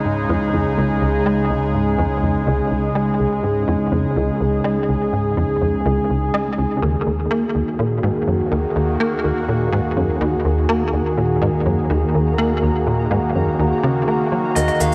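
A straight 4/4 pulse at 124 BPM drives this cosmic, mysterious stretch of sequencer-driven space music in Eb minor, cut from a longer piece, where a tight, punchy sequencer bass riff with a sawtooth filter pluck and ring modulation sits up front beside a bright, detuned resonant pad holding sustained chords, while a warbling vintage analog drone hums in the background under a filter sweep. At 6.8 s the harmony moves from Db to Ebm and a mellow, pulsing gated texture fades in on a single high note. In the final moments, from 14.6 s, a dark, lo-fi overdriven lead guitar melody and electronic cabasa and percussion blips appear, all set in a wet concert hall reverb.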